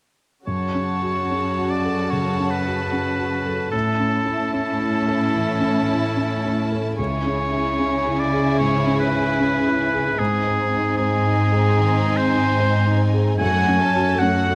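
A bright, up-front oboe carries a second line over a focused violin section singing the high melody in this sorrowful, bittersweet cinematic passage in F# minor at a rubato 74 BPM, joined by a smooth second violin section, a background viola section and an intimate grand piano with audible action noise in the accompaniment, while lush cellos hold the bass and light reverb surrounds the chords F#m, A, C#m, G# and back to F#m.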